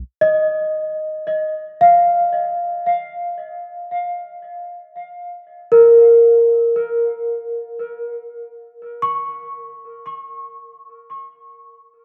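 Ambient music in free time, this serene excerpt rests on a single A#madd11 harmony, tuned to A4 = 439 Hz. A lone celesta enters at 0.2 s with bell-like, delicate arpeggios between A#4 and C#6, sitting up front with hard felt hammers and a tape echo. The celesta fades out across the passage, and a wet concert hall reverb with a 2.1 s decay surrounds the sound.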